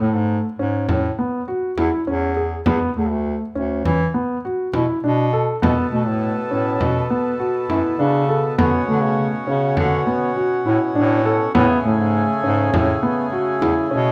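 Close, detailed microphones and a light reverb frame this urgent, restless piece of contemporary chamber music, moving at 101 BPM in a straight 5/4. A dark, mellow grand piano rolls arpeggios with long sustain while a bright, roomy bass clarinet carries the bass line up front, and a frame drum played with hard hands joins at 0.9 s. At 5.6 s a reedy, nasal hand-pumped harmonium breathes in with sustained chords as the harmony travels from Amaj7 through E7sus4 and Dmaj7 before returning to Amaj7 in this brief excerpt from a longer work.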